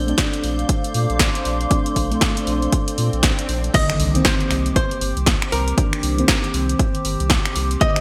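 Moody and smooth, this deep house excerpt rides a swung 4/4 groove. It opens with a hollow, flute-like pad, a mellow FM electric piano playing stabs through chorus, phaser and delay, a round sub bass, a faint shimmering string-machine violin texture and a warbling, lo-fi tape-like pad, each pumping with sidechain, over an up-front electronic kick and a punchy analog drum machine of crash, finger snaps, hi-hat and snare in gated reverb. A very quiet electronic swell rises from 2.9 s into an impact, and at 3.7 s the harmony shifts from Bbmaj9 to Cm9 as the string machine and tape pad stop and a dark, clean, picked archtop guitar with delay takes the melody, all set in the lush hall reverb of a bright 1980s-style digital production.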